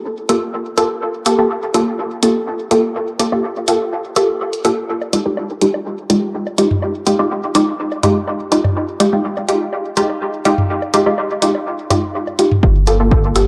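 A hypnotic, nocturnal dub techno passage at 124 BPM opens with muted, detuned sawtooth-and-square chord stabs, up front with chorus, phaser, sidechain pumping and dub echo, moving from Gm9 to Fm9 over an analog, tape-warm electronic hi-hat re-recorded in a large room, joined at 5.0 seconds by pumping electronic woodblock and toms before a punchy kick and a smooth, dark sine sub bass on G1 with tube saturation arrive at 12.6 seconds, all set in a lush hall reverb on a gritty hardware recording with lossy compression artefacts.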